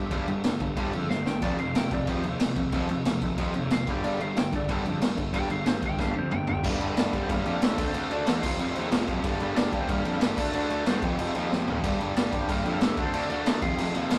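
A straight 4/4 pulse at 185 BPM drives this urgent, angry punk rock excerpt: a gritty, up-front garage drum kit with a punchy kick and fills at 1.1 and 6.0 seconds pushes a growly fuzz bass and two overdriven guitars (one semi-hollow) churning riffs in the background over Gm, D5 and F5 chords, while a twangy, slightly broken-up lead guitar solos until 6.6 seconds, before the second section, inside a rough rehearsal-room sound with small-room reverb and tube saturation.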